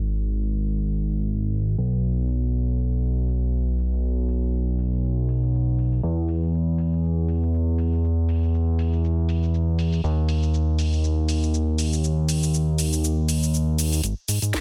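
A fat, detuned sawtooth bass sits up front from the first second alongside an overdriven, layered house kit of bright hats, shaker and cracking snare under a filter sweep, giving this sleek, groovy nu-disco excerpt in G# minor a swung 120 BPM pulse in a dry, dense, heavily limited mix.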